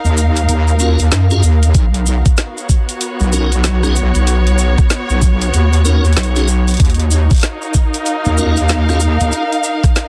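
A heavy, detuned square-wave wobble bass, saturated and up front, drives this funky, swaggering glitch hop excerpt at 95 BPM in Eb minor, swung on the sixteenths over Ebm9 and Bmaj7 chords. A grainy cabasa and a dark, lush bowed string section with sidechain pumping sit beneath it from the start. An overdriven drum kit of woody snare, rim click and bright hats joins at 0.4 seconds, followed at 0.8 seconds by piping tonewheel organ stabs carrying key click, chorus vibrato, slow rotary speaker, 12-bit sampler grit and delay, and at 1.7 seconds by an overdriven, knocking electronic kick, all within a dense, heavily limited mix with light reverb.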